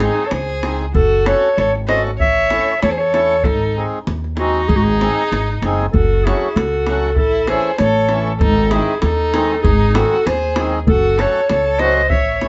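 A dulled, moderately reverberant studio sound frames this bittersweet, virtuosic Balkan wedding-band snippet in swung 2/4, where a mellow, roomy clarinet sings a classical-style melody up front, a distant, expressive violin bows a rich second line with vibrato and portamento, a reedy, hollow accordion with a vintage, band-limited tone supplies accompaniment, a woody, growly pizzicato upright bass on steel strings anchors the low end up front, and a tight davul in a small room carries the percussion.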